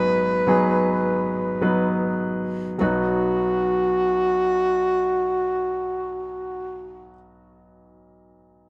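A slow pop ballad excerpt opens with alto saxophone and baby grand piano sounding together from the first moment, the mood hopeful and emotional. The saxophone carries the melody up front in a jazz-style solo, its tone clear with light vibrato, a breathy subtone and scooped notes. The piano accompanies with an open, up-front sound, reaching from deep in the bass up to meet the saxophone's register. The pace slows over the first 2.8 seconds as a minor seventh chord gives way to a brighter major chord. The saxophone stops at 7.1 seconds and the piano rings on alone until 8.7 seconds, both set in a moderate plate reverb that lends a gentle sheen.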